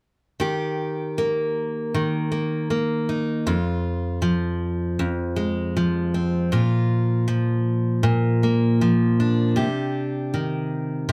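Pop with an easy-going, carefree mood and a lightly swung feel, featuring a full-bodied picked steel-string acoustic guitar that sits up front and carries the accompaniment from 0.4 to 11.1 seconds. The guitar moves through Eb, Fm, Bb5 and Cmadd9, sounding in a small room with moderate reverb. This short passage is cut from a longer piece.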